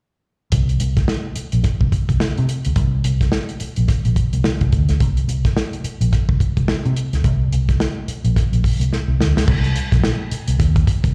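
Sly and driving, this funk groove moves at 107 BPM in 4/4 with a 16th-note swing, sitting in C minor. A vintage muted electric bass, played with the fingers, carries the low end from Bb1 to C3, its foam-muted tone dark, round and amped, placed up front in the mix. A soul drum kit plays alongside it throughout, acoustic and dry with dark cymbals, a medium-tuned snare, a tight kick and a rolled-off top, touched by a slapback echo. Both parts run together from 0.5 to 11.1 seconds, and a drum fill between 8.9 and 9.5 seconds ushers in a new section that carries the groove to the end. The sound comes across as a live gig heard through the venue's PA, with a recital-hall reverb hanging faintly around an otherwise close, dry sound, and the passage is cut from a longer piece.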